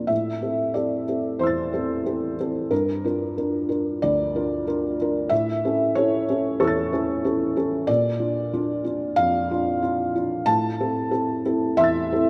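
Neoclassical minimalist piano, reflective and wistful, in which a lone felt-muted upright piano plays rubato around 92 BPM in 4/4, its mellow, dark, intimate tone sitting up front and spanning D2 to A6 through a progression of Am, Gm7, A, Bb and back to Am, bathed in a lush, wet hall reverb within a rough home-demo mix, cut from a longer piece and lasting 12.3 seconds.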